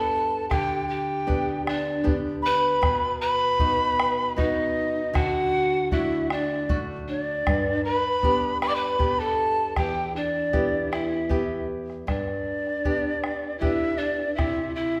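A bright, airy wooden quena sits up front and carries the melody, its end-blown tone softly attacked and shaded with vibrato. Beneath it, a breathy bamboo pan flute plays a second line in a lower register, hollow and mellow with rolled-off highs, yet each note opens with a crisp chiff. A full-bodied classical nylon-string guitar fingerpicks the accompaniment, finger squeaks audible as the chords move from G through B, D and E minor. The bombo enters at 0.5 seconds with a round, close and dry thump in 3/4 time. This Andean folk piece feels festive and melancholic at once, bathed in a recital-hall reverb, and at 12.1 seconds it turns to a new passage that lands on C before the cut at 15.0 seconds.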